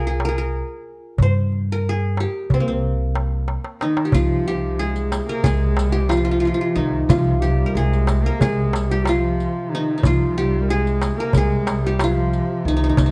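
Close, detailed microphones and light reverb give this Turkish makam ensemble an intimate, present sound in this cut from a longer piece. The music is hypnotic and melancholic, moving at 183 BPM in 9/8 with a straight feel in C makam ussak, tuned to A4 = 438 Hz. From the start, an up-front qanun carries the melody with a bright-edged, fingerpicked tone over its triple strings, while a woody, thumpy pizzicato upright bass anchors the low end. From 0.2 s a crisp, metal-shelled darbuka sounds small, high and dry. A drum fill at 3.5 s leads into the second part of the piece. At 3.8 s a bowed cello adds an expressive second line with vibrato, portamento and a soft attack, alongside a dark, smooth-topped clarinet in classical style sitting in the background. From 4.1 s a warm duduk holds a low drone with vibrato and scooped notes, and a riq's dark jingles shimmer quietly behind the ensemble.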